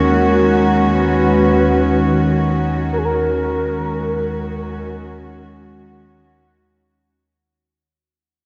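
Soaked in a wet plate reverb and dulled at the top end, this dreamy fragment of dark ambient drone drifts in free time in E-flat minor, unsettling and ominous, and fades out from 1.6 seconds. Up front, an intimate chamber cello section holds dark, bowed sul tasto chords with light vibrato over an evolving analog drone of sawtooth and pulse-wave tones with pulse-width modulation and chorus. A mellow, horn-like synth lead with a round, warbling vintage tone and vibrato carries the melody through chorus and diffuse delay until 5.0 seconds.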